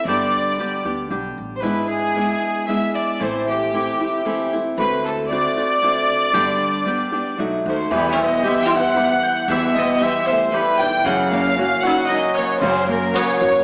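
A rich chamber violin section carries the melody up front with light vibrato and a biting, earthy edge, over fingerpicked flamenco guitar and a woody pizzicato upright bass in the background, in a proud, romantic mariachi folk piece in 3/4 at 115 BPM in G major. At 7.7 seconds a buzzing, shimmering sitar adds a second line, and a ringing Celtic harp joins with arpeggios at 7.9 seconds as the harmony moves to Em and then F#. The whole is heard through a recital hall reverb with a small-speaker sound, cut from a longer piece.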